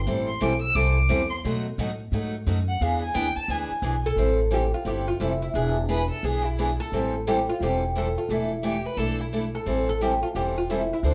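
A wet studio reverb surrounds this excerpt of a band playing live in one room, cut from a longer acoustic string swing piece in the jazz manouche style. It moves at a brisk 175 BPM in 4/4 with a swinging eighth-note feel in A minor, and the mood is virtuosic. The bowed violin takes the spotlight from the start with a solo, its expressive vibrato, portamento and smooth top gliding over a thumpy, woody pizzicato upright bass and a bright, freshly strung picked steel-string guitar, both up front. At 4.1 seconds a bright, plectrum-plucked fretless oud with doubled strings enters up front to carry the melody, while the violin continues as a second line until 9.4 seconds. Beneath them the harmony cycles around Am7 and E7, with a turn through B7 and an E7sus4 before settling back on Am7.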